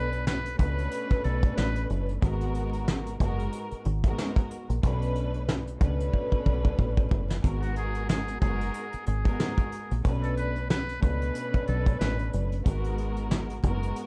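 Boom-bap hip-hop at 92 BPM with a swung 16th feel in G# minor, dark and moody, moving between Bm9 and G#m9 chords under vinyl crackle in a dry mix. A soft brush drum kit with a fat snare and tight kick sits up front beside a deep, round, foam-muted fingered electric bass, while a lush, woody bowed string section with vibrato carries the harmony through a cassette-tape haze. A buzzy, breathy trumpet in a metal mute plays jazz-style solo phrases briefly at the start and again from 7.6 seconds, after a drum fill at 6.1 seconds.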